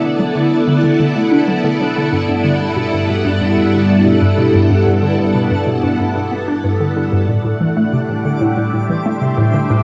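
A straight 4/4 pulse at 93 BPM drives this hypnotic, cosmic slice of sequencer-driven ambient space music, cut from a longer piece and tuned to A4 = 439 Hz. Up front, a full string machine ensemble holds lush, sawtooth chords with a sub octave and slow attack, colored by phaser and ensemble chorus. A hollow square-wave pluck repeats a bouncy, warbling riff in the low-to-middle register, its detuned tone, noise layer and fast filter snap thickened by chorus and delay. In the background, a twinkling granular FM texture adds an octave-up shimmer with a long release and its own reverb. The harmony moves from D to Gadd9 at 2.1 seconds and settles on Am at 7.3 seconds. The whole piece sits in a small, wet booth ambience and carries the vintage grain of a home cassette recording.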